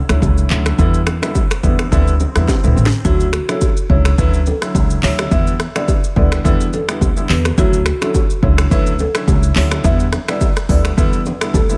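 This joyful, romantic afrobeats piece at 106 BPM opens at 0.1 s with a polished baby grand piano voicing Dmaj9 and Em7 chords under a lush chorus, a woody pizzicato upright bass, and an up-front electronic drum kit with a deep kick, sharp snare, smooth hats, snaps, handclaps, rim clicks, shaker and toms, while bright, vintage-sounding bongos and congas sit softly in the background. A very quiet electronic swell enters at 1.5 s, and a drum fill leads into the next section, where a marimba with padauk bars and medium mallets enters at 3.1 s carrying the melody through a delay. Lightly swung sixteenths and a small room ambience give the groove an intimate glow.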